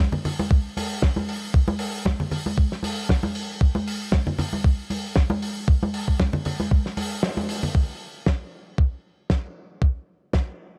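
Nu-disco at 116 BPM in 4/4, this short excerpt cut from a longer piece has a sensual, cosmic mood and a lightly swung sixteenth-note feel. Bright, close congas with hard hands sit up front from the start and play until 7.7 seconds. A damped 70s drum kit joins on hi-hat and a fat, dark snare, its dry, smooth sound rolled off at the top. An electronic kick drum enters at 0.5 seconds, a thumpy, sampler-style sound with tape warmth and a touch of small-room character, placed prominently in the mix. The band hits an accent at 7.2 seconds as the kick drops out briefly, then kit and kick carry a new section through to the end.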